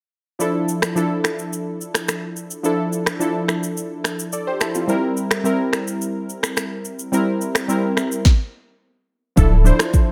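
A digitally ambient mix frames this sultry, hypnotic afrobeats excerpt at 107 BPM in D minor, where round, full-bodied, detuned sawtooth analog keys with chorus and a filter sweep move from Dmadd9 to C7 over an electronic afro-pop kit of deep kick, sharp snare, rim click, finger snaps and shaker, before a mellow sine sub bass sounds a sustained D1 at 9.4 seconds.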